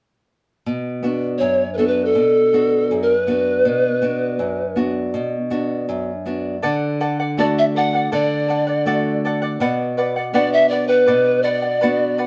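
A bright, small fingerpicked nylon-string guitar opens this earthy, festive Andean folk piece in free time and B minor at 0.7 s. A breathy, woody pan flute soon carries the melody up front with vibrato, tongued chiff and rolled-off highs. From 6.6 s, as the harmony moves from Bm to D, a shimmering charango joins on fingerpicked double strings, some doubled at the octave. The band plays live together in a moderate stone room.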